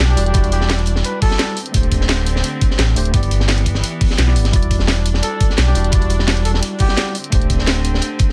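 Lush and dreamy, this liquid drum and bass excerpt drifts over a chord cycle built around Em9, D7sus4 and G6. A deep, full sine sub bass with an added octave sits up front with a fast attack and sustained notes, beside a knocking electronic kick that enters at 0.3 seconds. Two more kits fill out the groove: a layered, produced drum and bass kit with a cracking snare and bright hats, and a dark, saturated breakbeat kit with a high-tuned snare and gritty, rolled-off top, high-pass filtered and tucked in the background. A barky, clean tine electric piano plays the accompaniment through delay, while a rich chamber string section with a reedy, gut-string tone holds bowed sustained chords in a period style. A bucket-muted trumpet carries the melody in two phrases, from 0.1 to 1.6 seconds and from 5.2 to 7.1 seconds, its veiled, raspy jazz voice full of vibrato, scooped notes and growls and trailed by tape echo. 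A small room ambience surrounds the mix, with its top end held below 11.0 kHz.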